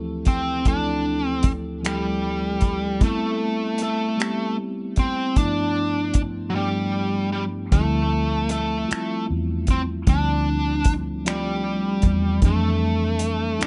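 Yearning and late-night, this slow six-eight R&B excerpt in D dorian at 51 BPM opens on a mellow tine electric piano moving through Dm11, Am7 and G13, joined at 0.3 seconds by an up-front, smooth overdriven lead guitar melody and a dry, cloth-damped thuddy drum kit with a rolled-off top, made up of finger snaps, hi-hat and tight kick. After a break at 6.5 seconds, a round, foam-muted vintage fingered bass enters at 7.7 seconds under Dm11 and Fmaj13, all in a light reverb.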